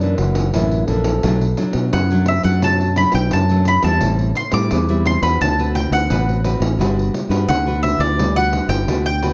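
A straight 4/4 groove at 86 BPM drives this festive, lively blend of samba and choro, cut from a longer piece, with a jingly pandeiro played by soft hands sounding distant in a large room. Underneath, a round, up-front fingered electric bass carries a warm, amped tone, while a bright, full-bodied nylon-string guitar fingerpicks a classical-style accompaniment, its finger squeaks audible through the close, detailed microphones. A mellow trombone opens with a brief jazz-style line of soft attack and light vibrato, lasting only until 1.7 seconds. At 1.9 seconds a picked mandolin takes the melody high in its register, its double strings ringing bright and round at the front of the mix. The harmony moves from F#7alt through Bm7, Am7 and D6 to Gmaj7, all wrapped in light reverb with a faint mains hum in the background.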